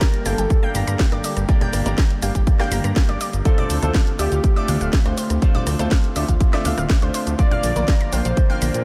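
Progressive house with a driving, emotional pull, where a punchy, up-front electronic kick and a house kit of cracking snare, hi-hat, rim click and cabasa carry the groove beneath a fat, saturated sawtooth bass with sidechain pumping and polished grand piano stabs that both enter at 0.3 s, a bright, detuned analog pluck spinning arpeggios through chorus and analog delay, a velvety unison synth lead singing the melody with vibrato from the background, a pure FM bell tracing a very quiet second line, a smooth analog pad holding soft sustained chords, and ringing congas joining at 0.7 s, set in light digital ambience.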